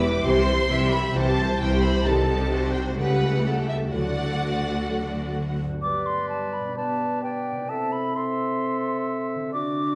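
Dramatic and urgent, this short classical passage at 130 BPM in 4/4 opens with lush bowed strings, as violins carry the melody and a second line over a soft-attacked viola section with portamento, a cello section in the background and a double bass section up front, all shaded with vibrato. A mellow, ringing concert harp arpeggiates underneath, and a dark, tight French horn section holds sustained chords from 0.2 seconds. Around 5.8 seconds the strings fall away and the woodwinds take over, with an airy, hollow flute up front joined by a clear, present clarinet and a distant, roomy oboe, each adding its own line alongside the horns and harp. A recital hall reverb gives the whole ensemble a spacious, wet glow as the harmony moves from C through D toward G.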